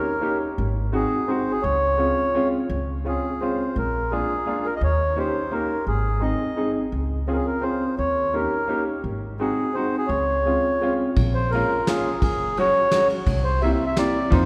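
Heard through a wet church reverb with a long tail, this short cut from a longer musette waltz feels charming and nostalgic, moving at 170 BPM in 3/4 with a straight feel. A mellow, reedy accordion sits up front, carrying the melody with a round single-reed tone from the very start. A clear, woody upright piano accompanies it with short, natural-sounding chords, and a thumpy pizzicato upright bass with steel strings joins at 0.6 seconds. The harmony settles in D-flat major through seventh chords before shifting to B-flat minor at 11.2 seconds. At that point a soft brush drum kit enters, with a dark, smooth sound, a fat snare, a punchy kick and ride cymbal, adding gentle momentum to the closing phrase.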